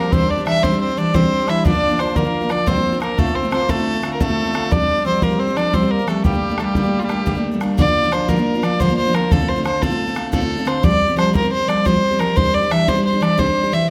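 Celtic folk slip jig in a driving, dark and lively 9/8, where an up-front fiddle with a gut-string, reedy tone carries the melody over bright, full-bodied picked steel-string acoustic guitar and a boomy, open bodhran, while a mellow cor anglais with light vibrato adds a second line until 7.4 seconds, all set in a moderate recital hall reverb with close, detailed presence.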